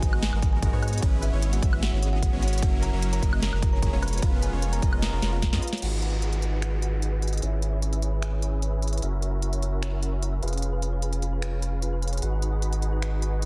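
A lush, emotional half-time future bass drop opens at full force, with a woody, ringing kalimba melody over huge, detuned supersaw chords and a deep, saturated sub bass sitting up front, all pumping, alongside a punchy, overdriven electronic kick and a trap kit of sharp snare, crisp hats, cymbals, finger snaps and woodblock, under a dense, dry, heavily limited master. A round, tine-like synth pluck plays arpeggios in the background throughout; during a drum fill, the kick drops out at 5.5 seconds and the kalimba stops at 5.8 seconds, when an electronic downlifter falls away and a filter sweep moves across the pluck through to the end at 13.5 seconds.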